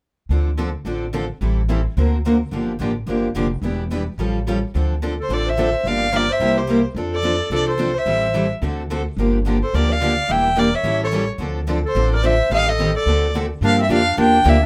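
Acoustic string swing in the jazz manouche style, bittersweet and swinging, this excerpt opens with two picked steel-string acoustic guitars over a woody, growly pizzicato upright bass. One guitar is a boxy parlour instrument up front, and the other is a full-bodied jumbo sitting lower in the mix; both are bright and show finger squeak. At 5.2 seconds a bowed violin takes the melody, earthy and biting with light vibrato and a smooth top, while a breathy clarinet adds a second line with scooped, jazz-style notes over minor seventh, ninth and augmented chords in moderate studio reverb.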